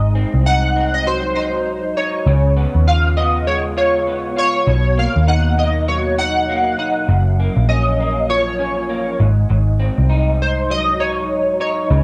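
From the first beat, chorused retro synth keys carry a bright, glossy pulse-wave melody with detuned sawtooth shimmer and a filter sweep. Beneath them sit an electric guitar through a small old amp, slightly broken-up with chorus and vibrato, and a dark, round, foam-muted picked bass up front. This nostalgic, laid-back indie and bedroom pop excerpt moves at 100 BPM in 4/4 with a gentle 16th-note swing, cycling through G#7, C#7, Bmaj7 and F#maj7, while cassette grain, analog delay on the keys and light reverb give it a homemade, faded character.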